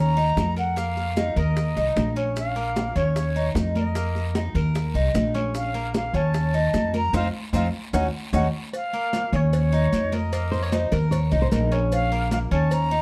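A distant, airy flute with vibrato opens this nostalgic Cuban son and guajira excerpt together with the picked, metallic double strings of a tres playing arpeggios and a woody, thumpy pizzicato upright bass up front. Ringing, high-tuned congas arrive almost at once, while round, low-tuned bongos and cowbell, a raspy guiro and grainy maracas sit in the background, and the band hits an accent topped by a drum fill before the phrase starts over at 8.7 seconds. At 10.5 seconds a small, fingerpicked nylon-string guitar adds a brief second line with finger squeak and slapback echo, inside a dark production with light reverb.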